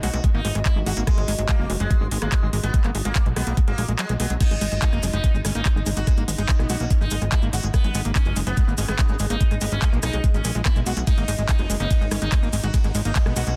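A bright, buzzing plectrum-plucked sitar melody with phaser, tape echo and sidechain pumping opens this hypnotic, psychedelic trance excerpt at 144 BPM in G# minor, over a punchy, funky analog bass, a squelchy, screaming acid riff with distortion and chorus, a very quiet morphing wavetable pad, and a garage drum kit of metallic hats, handclaps, rim clicks, ride and crash, joined at once by an up-front knocking electronic kick. The kick drops out briefly at 4.0 seconds, grainy, mellow maracas enter at 4.4 seconds, and a very quiet, metallic FM wobble bass adds a second line from 5.1 seconds. The sound is a dense, heavily limited modern master with digital ambience.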